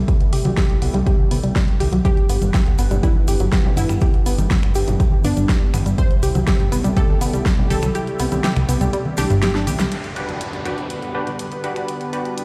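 Played through a big sound system in a bare stone room with light reverb, this hopeful, uplifting progressive house excerpt in G major moves at 122 BPM in a straight 4/4 over C6 and Gmaj7 chords. A lush, detuned sawtooth pad sits in the background with chorus and phaser, while a fat, sidechain-pumped analog bass and bright, wave-folded analog pluck arpeggios with digital delay fill the mix. A punchy, up-front electronic kick joins a deep house kit of finger snaps, hi-hat and a fat snare, with soft-handed vintage congas and a grainy, close tube shaker further back. A full-bodied unison pluck melody with cassette tape colour and delay carries the tune, and the kick drops out at 8.0 seconds before a drum fill and band accent bring in an electronic downlifter at 9.9 seconds and low-pass-filtered supersaw stabs at 10.2 seconds.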